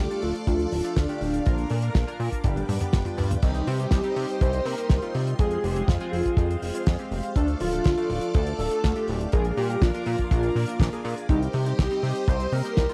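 Danceable and melodramatic, this italo disco excerpt runs at 122 BPM in a straight 4/4, set in C minor and cut from a longer piece. A thick, bold unison lead carries the melody between D4 and C5, its detuned sawtooth tone darkened and given vibrato, with tape echo trailing behind it. Underneath, a glossy chorused synth bass sits up front with a plucky filtered attack, while a chorused polysynth adds bright, retro stabs colored by cassette tape, and a swirling phased string machine holds slow-blooming chords. The damped 70s drum kit enters at 0.1 seconds with a fat snare, hi-hat, crash and toms, followed at 0.5 seconds by a tight, dry kick pushed forward in the mix, and a drum fill from 2.4 to 3.4 seconds leads into the second section. The harmony moves through Dm, Bb and G before passing through Cm, Fm, Dm and Bb and returning to Cm, all captured in a dry, close small-room sound with a 1970s studio character.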